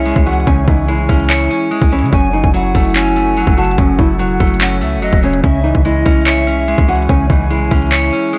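Studio reverb surrounds this dark, hard-hitting trap excerpt in C# minor at 145 BPM with a half-time feel, where a thumb-plucked flamenco guitar carries the melody through digital delay, a pure, chiffy pan flute adds a second line that stops at 7.1 seconds, a clean fingered electric guitar accompanies, a mellow woodwind section holds tight sustained chords in the background, a deep, boomy sine 808-style bass rumbles beneath, and an up-front trap kit punches with a hard-clipped kick, crisp hi-hats and handclaps over chords moving from C#m to F#m and back.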